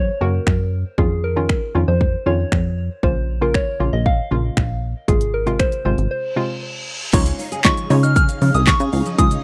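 A dry, close, 1970s-style studio sound frames this euphoric, summery dance-pop excerpt, where a soft, pure synth bell carries the melody with chorus and tape echo over a hollow, nasal square pluck and a punchy, funky analog bass, both pumping with sidechain, while a punchy pop drum kit with a fat snare, crisp hats, snaps, claps and shaker enters at 0.5 s. A break begins at 6.1 s, with a reverse cymbal sounding through it from 6.3 s, and at 7.1 s a swirling, phased string machine and a fingerpicked nylon-string guitar with finger squeaks join in the background.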